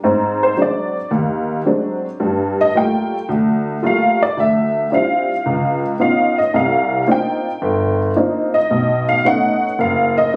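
A detuned, jangly honky-tonk upright piano sits up front and plays alone through this 10.4-second cut from a longer solo jazz piece, swinging warmly at 111 BPM in 4/4 over rich extended chords that move from Ab7#11 to B9, its woody, vintage tone wrapped in a moderate club reverb as if caught on a phone in the room.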